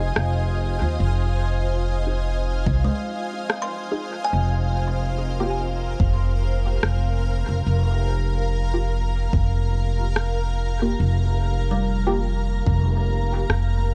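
A bright, cloudy granular pad sounds from the start of this deep, hazy ambient dub fragment alongside a growly, woody upright bass that sits up front, with an electronic rim click entering almost at once and a swung 4/4 feel. A muted, chorused dub chord stab with a filter sweep drifts in the background from 2.1 seconds, joined shortly after by a distant electronic kick, while both the rim click and the stab carry dub echo. A hollow, vintage-sounding kalimba adds brief, echoing arpeggios near the beginning and returns at 11.7 seconds, all within a small room ambience.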